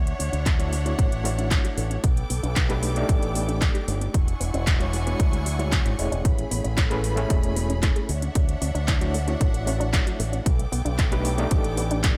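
This feel-good, groovy nu-disco excerpt at 114 BPM in straight 4/4 opens with a lush, bowed symphonic string section holding sustained chords, alongside a fingered electric bass run through an envelope filter and a round, nasal analog pluck spinning arpeggios in the background. A filter sweep runs across the pluck's arpeggios for the whole clip, while chorus and digital delay add shimmer to its detuned, wave-folded tone. The house kit enters at 0.1 seconds with handclaps and metallic hats, and the punchy, up-front electronic kick arrives at 0.5 seconds, with sidechain pumping through the strings, bass and pluck. At 0.6 seconds an overdriven, reedy electric piano joins as accompaniment, its gritty tone pushed through a combo amp with fast tremolo. The harmony moves through Dmaj9, B7alt, E13 and Amaj9 before returning to Dmaj9 and B7alt, all set in a digital ambience.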